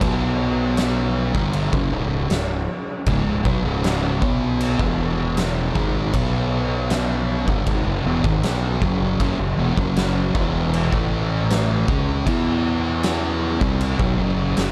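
Stoner and doom metal in C# minor at a slow 78 BPM in straight 4/4, this brooding, heavy passage is cut from a longer piece and runs about 14.7 seconds. A thick, double-tracked fuzz guitar carries the riff up front, picked and distorted, moving through power chords on B, C#, E, G#, F# and A, with a single C# minor chord at 7.5 seconds. Beneath it, a fingered electric bass, overdriven with tube saturation, gives a punchy, fuzzy low end that blends a direct and amped sound. An oversized, low-tuned acoustic drum kit plays throughout with a boomy kick, a fat snare and dark crash cymbals, its big, pumping room sound saturated and gritty and placed up front. Studio reverb and a dark, warm production wrap the whole performance in a heavy, brooding atmosphere.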